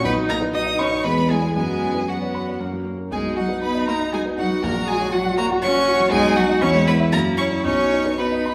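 A quick classical-period movement for piano quintet, this graceful, lively passage is cut from a longer piece and moves in triple time with a rubato feel. The first violin carries the melody high in its register, its bowed, single-player tone full and focused with vibrato, yet set at a distance. The second violin and the cello supply second lines, the cello's top end smooth. The viola adds expressive portamento to the accompaniment, and all five parts sound together from start to finish. Up front, the dark, mellow grand piano has a vintage, intimate character with audible action noise, while the harmony passes through E and F# suspended and seventh chords before coming back to B at 7.6 seconds, bathed in the wet reverb of a recital hall.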